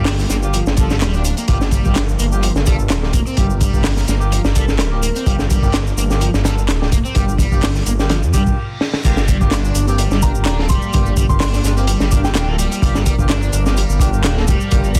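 A dense, heavily limited mix in a small room carries this funky, raw breakbeat excerpt at 127 BPM in G minor, with a 16th-note swing, built on a crunchy, gritty drum kit with a high-tuned snare and dark cymbals, overdriven electronic handclaps and shaker, and a thick, menacing detuned saw bass sitting up front on a Gm7 chord. An overdriven semi-hollow guitar riff with tube saturation, phaser and delay plays alongside punchy, distant horn stabs and a swirling, very quiet phased analog pad. A reverse cymbal rises into a brief stop at 8.6 seconds and a drum fill, and the drop lands at 9.0 seconds, where a soft, pure FM bell melody with an AM radio tone floats in the background from 10.2 seconds.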